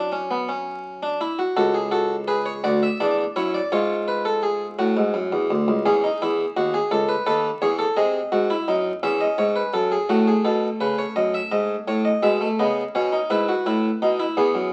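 This short excerpt sounds like it was lifted from a very old 78 rpm record, with vinyl crackle running beneath the music and a moderate studio reverb giving the notes a sense of space. It is a baroque-style three-part fugue for solo harpsichord in F# minor, set in a lilting 6/8 at 56 beats per minute counted in dotted quarters, with an elegant yet lively mood. The harpsichord is a Flemish-style instrument on one set of strings, plucked and placed up front, with a round, warm tone that spans from C#2 up to F#5. It opens on a lone F#5 before the harmony moves through chords such as D, C#/G# and C#m/E, passing through G# before returning to F# minor territory around 10.1 seconds. The closing passage turns through D#dim/F# and G#m/B to end on E/G#, leaving the phrase open as the cut from the longer piece arrives.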